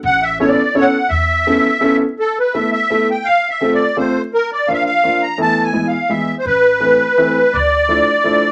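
Vinyl crackle and a moderate studio reverb lend this short excerpt from a longer piece a faded, old-record sheen. It is a bittersweet, nostalgic musette waltz in three, with a light swing in its lilt. Up front, a reedy musette accordion carries the melody, its shimmering tuning colored by a boxy small-room tone. A warm, woody upright piano sits close beside it in accompaniment. Beneath them, a dark, thumpy pizzicato upright bass with gut strings plays quietly, dropping out at 1.6 seconds and returning at 6.5 seconds. The harmony starts on an open Aadd9, then moves in the second section through F, Bb and a suspended E before settling on A minor and Dmadd9.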